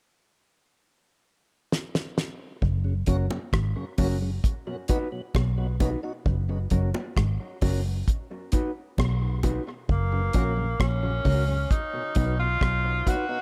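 A straight 4/4 dub reggae groove begins with a drum fill from a dry, damped 70s kit with a fat snare and tight kick, then a round, foam-muted fingered bass sits up front over F# and B chords beside a very quiet, twangy envelope-filtered guitar riff, while a lightly overdriven tonewheel organ on slow rotary speaker, a dark clean fingered guitar and low-tuned bongos sit in the background with dub echo, until a distant, roomy tenor saxophone with dub echo takes a solo melody at 9.9 seconds in this laid-back, spacious, echo-heavy excerpt from a longer piece.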